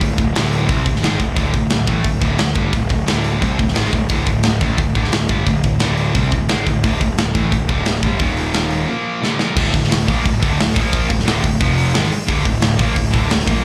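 A gritty, up-front metal drum kit with a tight kick and crash, hi-hat and snare drives this epic, relentless heavy metal excerpt in D minor at 176 BPM, beneath a sludgy overdriven guitar in the background, a bright tight guitar with slapback echo, and a punchy fuzz bass, all heard as a live gig through a club PA, with a drum fill at 9.2 seconds leading into a very quiet double-tracked distorted guitar joining at 9.6 seconds.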